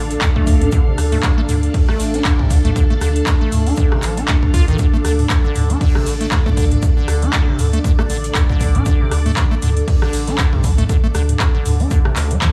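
A punchy electronic kick sits up front at 118 BPM in a swung 4/4 groove, joined by a booming analog drum machine with tonal snare, handclaps, rim click, toms and metallic hats, plus a very quiet acoustic studio kit adding hi-hat, shaker and snare, in this hypnotic, raw acid house excerpt in D minor that holds on a single Dm chord. A squelchy, resonant square-wave acid bass riff with tape echo rides over a round sine sub bass that pumps with the sidechain. Above them a lush vintage string machine sustains chords through ensemble chorus and pumping, while an ethereal, airy pad with built-in reverb hovers in the background, all in a dry, small-room sound.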